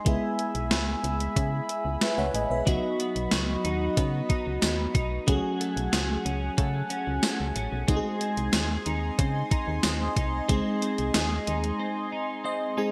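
A gated digital drum machine with a thumpy kick, tambourine, hi-hat and an overdriven gated-reverb snare drives this urgent, dramatic 1980s-style pop fragment at 92 BPM in 4/4, with a punchy, round FM bass up front, a lush, dreamy FM electric piano treated with chorus and phaser, and a shimmering pulse-width pad holding sustained chords over E, B, F#madd9 and G#, while a bright, twangy twelve-string electric guitar riff with analog chorus and delay enters at 2.7 s, and after a break at 11.8 s the electric piano plays a short fill at 12.1 s, all set in a wet plate reverb and a bright digital production.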